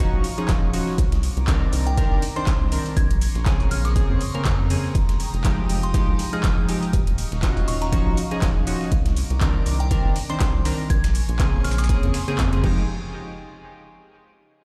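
This deep house excerpt sounds dry in itself, yet it plays through a big sound system in a bare room, so a large reverb hangs around it, with a late-night, warm mood and a swung groove. A punchy, layered electronic kick arrives at 0.5 s and sits alongside a rubbery, bouncy square bass that is hollow and dark, pumping with sidechain. Warm analog keys play detuned stabs with chorus, delay and a filter sweep, while an airy, breathy pad holds soft sustained chords in the background, phased and chorused, the two pumping together. A crystalline, warbling FM bell carries a vintage-tinged melody far back in the mix, treated with chorus and digital delay. The drums add an overdriven kit with metallic hats, handclaps and crash cymbal, layered with a gritty, compressed sampler-style kit of high-passed hi-hat, shaker and snare, all cycling through Ebm9, Cm9, Bbm9 and Fm9 until the music stops at 12.9 s.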